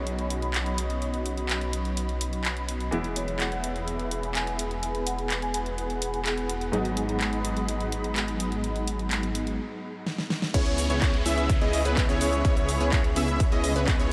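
Festival progressive house in C# minor at 126 BPM, this anthemic, euphoric excerpt opens with a synth filter sweep over Badd9, E and G#m7 chords. A very quiet, intimate baby grand piano with audible action noise plays accompaniment beneath a lush, bright unison pad sweetened with chorus and phaser, while a mellow supersaw stab riff with a filter pluck and analog delay pumps against a thick, menacing detuned saw bass. A big-room dance kit with a huge snare, handclaps, hi-hat, shaker, ride and crash drives the groove, and a woody soft-mallet marimba sings a brief melody in the background from 3.2 seconds. After a short break and drum fill, the drop lands at 10.5 seconds on C#m7, bringing in a punchy, up-front electronic kick and a bold, wave-folded unison lead playing arpeggios with vibrato. A very quiet downlifter trails underneath, and the whole mix is dreamy and soaked in a huge ambient reverb.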